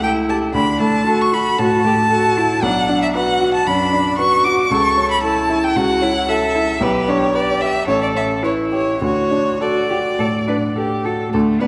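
A rich, focused violin sings the melody with vibrato up front, over a smooth bowed cello second line and a clear, short-sustained baby grand piano accompaniment, in this cheerful, graceful classical-period piano trio movement in D major, played with rubato at a quick 101-117 BPM in 4/4 and set in a wet concert hall reverb as harmonies pass through Bm and G/B before settling back on D near 9.0 seconds.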